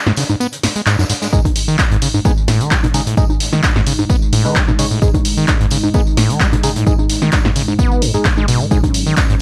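Acid house at 130 BPM in G# phrygian, gritty and driving, with a light swing on the sixteenths in this short cut from a longer piece. A squelchy, resonant sawtooth acid bass riff sits up front from the start, its overdrive, analog delay and sidechain pumping giving it a bite, joined by a dry, punchy analog drum machine of congas, handclaps, hi-hat, snare and tambourine. Beneath them, a distant, roomy soft-mallet kit adds hi-hat, a medium-tuned snare and tambourine, high-pass filtered and pumping in the background. At 1.3 s the opening break gives way as a dry electronic kick lands up front, a dark, detuned analog pad with chorus spreads sustained chords behind, and a hollow, nasal, wave-folded organ stab with chorus and delay punctuates the groove. A light reverb ties the sound together.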